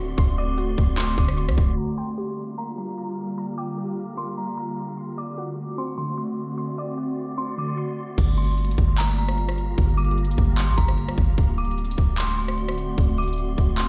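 Half-time 4/4 at 150 BPM in G minor, this hazy, spacious cloud-rap hip hop excerpt, cut from a longer piece, moves between D7 and Gm7 as a glassy FM pad with ensemble chorus, phaser and sidechain pumping holds sustained chords throughout, a warbly, nasal lo-fi pluck spins chorused, delayed arpeggios until 8.2 seconds under a filter sweep, an eerie, inharmonic detuned synth bell carries the melody from 0.4 seconds, a breathy wind-like noise texture sits in the background, and a round, deep 808-style bass and up-front trap kit with hard-clipped kick, crisp hats, handclaps, rim click and crash drop out by 1.8 seconds before returning at 8.2 seconds, all heard through a digital ambience like a big sound system in a bare stone room with a low-pass filter.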